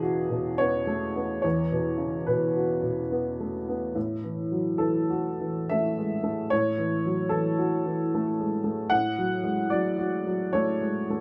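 Melancholic and intimate, this short passage of neoclassical minimalist piano, cut from a longer piece, drifts in a rubato 3/4 at around 66-77 BPM as a solo upright piano with a woody, slightly detuned, vintage tone and long sustain sits up front in a small room's moderate reverb, spanning E2 to F#5 as the harmony moves from Eadd9 to A6 at 4.0 seconds and settles on D/A at 8.9 seconds.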